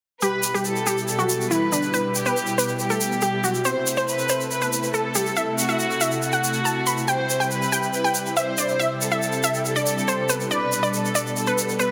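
A straight 4/4 pulse at 140 BPM drives this soaring, uplifting trance passage in E minor, cut from a longer piece, with a grainy, saturated tube shaker running throughout as the chords move through Em, Am, C and Gadd9. A bright, punchy unison pluck carries the melody with tape echo and a filter sweep. Alongside it, a floating, distant studio violin section bows a second line through its own tape echo, a very quiet supersaw stab adds another second line, and a thick unison pad holds chords beneath with chorus and phaser, all set in a lush 2.7 s hall reverb on a dense, heavily limited modern master.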